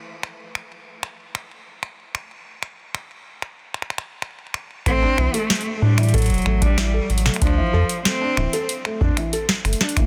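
A dense, heavily limited modern master with studio reverb frames this melancholic, eerie IDM fragment, cut from a longer piece and moving at 94 BPM in a straight 4/4. It opens with a booming analog drum machine alone, its finger snaps, metallic hi-hats and crisp snare sitting up front with a tape-warm tone, soft clipping on the snare and a trail of delay. At 4.9 seconds the texture fills out as a deep electronic kick drum joins under a rubbery square bass, whose hollow, bouncy filter pluck and dark, resonant sustain are thickened by tube saturation. In the same moment a felt-muted upright piano enters with soft, intimate arpeggios, its audible action noise roughened by vintage 12-bit sampler grit and echoed by digital delay. Alongside them a single close, bowed cello carries the melody with expressive vibrato and portamento, its clear voice also touched by delay. The harmony shifts from a bare A5 to a Dm9 at 7.4 seconds, deepening the haunted, wistful air.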